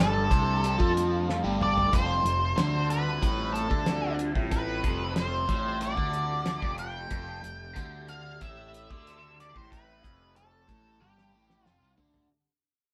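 An octave-fuzz lead guitar carries the melody up front in this trippy, hazy psychedelic rock excerpt at 93 BPM over an Fadd9 chord, alongside a dark, double-tracked overdriven electric guitar riff with phaser, a round fuzz fingered bass, a cloth-damped thuddy drum kit with a fat snare and tight kick that enters at 0.3 seconds and plays fills, and a swirling, vintage string machine with ensemble chorus and phaser glowing in the background, all in a live room with moderate reverb as the whole excerpt fades out across its 12.3 seconds.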